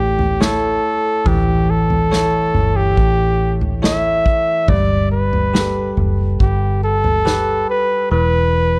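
A mellow flugelhorn carries the melody up front in this heartbroken, longing pop ballad, played close-miked in a pop style with light vibrato across a range from G4 to E5. Beneath it, a bell-like tine electric piano adds clean, direct accompaniment, while a vintage fingered electric bass, foam-muted and amped, supplies a round, punchy low end between E1 and A1. An acoustic drum kit played with bundle sticks comes in at 0.2 s and stops at 7.5 s, using a tight kick, a medium-tuned snare and toms in a small room. The tempo is a slow 70 BPM in straight 4/4, with the harmony moving from A to Gadd9 at 4.7 s before touching E5 near the close of this short cut from a longer piece. Light small-room reverb rounds out the dark, warm production.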